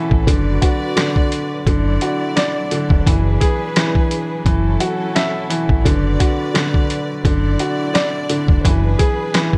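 A dry, close-sounding cut from a longer boom-bap hip-hop track at 86 BPM with a light 16th-note swing, gritty and tough, where a woody, short-sustained upright piano with cassette-tape coloring sits up front over soft, bowed studio strings holding sul tasto chords, a dark, round fingered electric bass, and a compressed, pitched-down sampler drum kit with a thumpy kick, medium-tuned snare, rim click and hi-hat roughened by 12-bit grit, all cycling through Bm/F#, D/F#, E7/F# and F#m7, each chord resting on F#.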